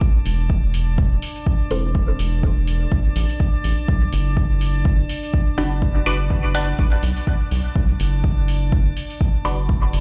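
A round, dark analog bass with tube saturation and sidechain pumping sits up front beside a deep, tape-warm electronic kick in this deep, nocturnal dub techno excerpt at 124 BPM with a light 16th-note swing, moving from Am to Bm at 3.9 seconds. Dry, metallic electronic hi-hats enter at 0.3 seconds, while a glassy, drifting texture of sine overtones hovers beneath with chorus and built-in reverb. A muted, detuned filtered chord stab flickers briefly at 1.7 seconds and returns from 5.6 seconds through phaser and dub echo, all played through a big sound system in a bare room with large studio reverb.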